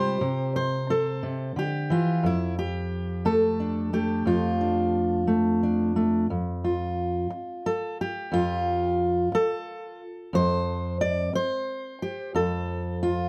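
Warm and pastoral, this short solo folk excerpt drifts along at 59 BPM in a straight 6/8, set in F major with the guitar tuned slightly sharp to A4 = 444 Hz. A fingerpicked steel-string dreadnought sits up front, its full-bodied tone captured by close, detailed microphones with light reverb, ranging from F2 up to D5 as it moves from C to F6 before the harmony falls away at 6.3 seconds. The passage is cut from a longer piece and ends at 13.3 seconds.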